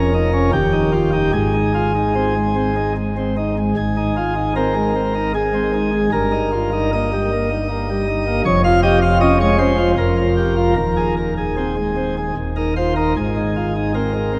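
Classical chorale-style music for solo chamber organ, majestic yet serene, moves in an unhurried triple metre with a free, rubato feel as its full principal chorus, up front with a distinct chiff at each note's onset, spans from deep pedal tones to bright upper notes, resolving home over 14.4 seconds of a longer piece, all bathed in a wet church reverb lasting about 3.4 seconds.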